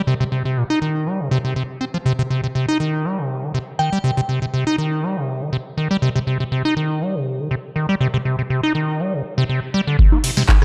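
A squelchy, hollow square-wave acid bass opens this gritty, raw acid house piece at 0.1 seconds, working a resonant riff with a filter sweep, tube saturation, 12-bit sampler grit and analog delay, sitting up front over a C5 power chord in C minor at 121 BPM with a light 16th-note swing. At 3.8 seconds a glassy, crystalline FM synth bell strikes a single full-bodied G5 with a long release, treated with chorus and tape echo. Near 10.0 seconds the harmony drops away and a deep electronic kick drum arrives up front, re-recorded in a large room. A booming analog drum machine follows with congas, handclaps, a crisp snare, metallic hi-hats, ride cymbal and rim click, all low-pass filtered and tape-warm. A moderate plate reverb and digital ambience give the whole fragment a dark production, and the piece is cut from a longer track.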